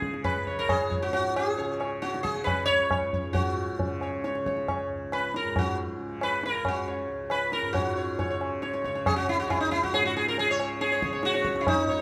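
A round, buzzing sitar rings up front with sympathetic strings in a solemn, longing Hindustani piece in raga Bhimpalasi on C#, moving in 5/4 at 136 BPM over a softly plucked, shimmering tanpura drone and low-tuned tabla with a short ring, all set in a moderate recital-hall reverb, with a new section arriving at 7.8 seconds in this passage cut from a longer performance.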